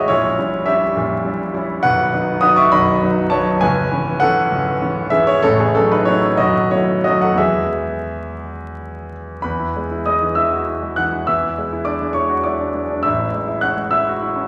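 Passionate and hopeful, this romantic character piece for solo piano unfolds in 6/8 with a free, rubato feel, and it is cut from a longer work. A clear grand piano carries everything alone from 0.0 to 14.5 seconds, sitting up front with an intimate, natural tone and the audible noise of its action close at hand. It ranges from B0 deep in the bass up to F#6, drawing on both the instrument's dark depths and its bright upper register. The harmony opens on a tense diminished chord before moving through minor and suspended colors to settle on E, and a second section beginning at 9.4 seconds reaches toward E7 and a lush Amaj7. A reverberant recital hall gives the playing a long, lingering tail, while a vinyl crackle adds an aged patina to the sound.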